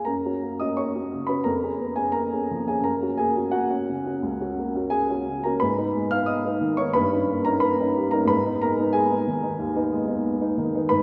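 This is a romantic classical character piece for solo piano, stormy yet bittersweet in mood, taken from a longer work. An upright piano carries everything alone from 0.0 to 11.0 s, its tone woody and polished, sitting present and up front. The playing moves in 4/4 with a free, rubato feel, ranging from the low bass up into the high treble. The harmony opens on a bright major chord, turns through a dominant seventh, then shifts to a minor colour that gives the passage its bittersweet edge. A long, wet church reverb surrounds the piano, lending the instrument the resonance of a large church.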